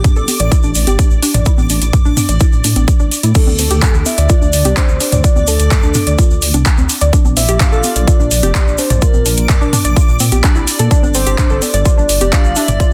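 Progressive house with a driving, expansive mood, built on a punchy up-front kick, overdriven big-room claps, crash and metallic hats, dry overdriven toms, congas and bongos, a grainy tube shaker, and a deep, rumbling detuned saw bass pumping beneath soft, round pluck arpeggios under a filter sweep, while a reversed, dreamy swelling texture shimmers in the background and a full, octave-layered synth lead with chorus and vibrato enters at 3.4 seconds over a dense, heavily limited master.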